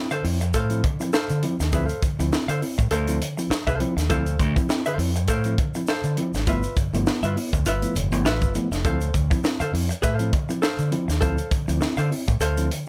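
A mellow tine electric piano opens this hypnotic, funky excerpt with stabs through its built-in speakers, joined almost at once by an accompanying dark, compressed hollow-body jazz guitar, a crisp fusion drum kit with a high-tuned snare, punchy kick and gritty, saturated pumping small-room sound up front, an amped, overdriven fingered bass, and a grainy, bright egg shaker in the background, as the dry groove moves from Dm7 to G13 at 6.5 seconds and back to Dm7 at 8.8 seconds.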